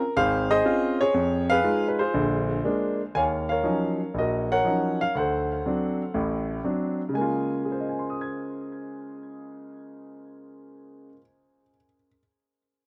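A dry, close 1970s-style studio sound with light reverb frames this relaxed, warm solo jazz passage at 120 BPM in 4/4 with a swung eighth-note feel in Db major, where a single concert grand piano sits up front with a natural tone and deep bass, spanning from Ab1 to Ab6 as it moves from Dbmaj7 through Fm7b5, Bb7, Ebm9 and D7 before settling on Db6 at 7.2 seconds.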